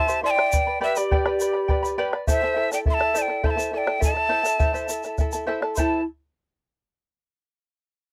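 A cane quena carries the melody from the very start, breathy and bright, with vibrato, a crisp chiffing attack and a slightly unsteady tone placed up front. Beneath it, a larger wooden quena plays a mellow second line in straight, tongued, expressive tone, alongside a fingerpicked acoustic charango whose shimmering double strings, some doubled at the octave, sit forward in the mix. A grainy, compressed tube shaker enters almost immediately, and at 0.4 s the round, close bombo joins with a dry thump. This festive yet wistful Andean folk ensemble moves in triple time over a short progression of C, G and A minor. The sound is a dry, close studio recording in a 1970s style with little reverb, and the clip is cut from a longer piece.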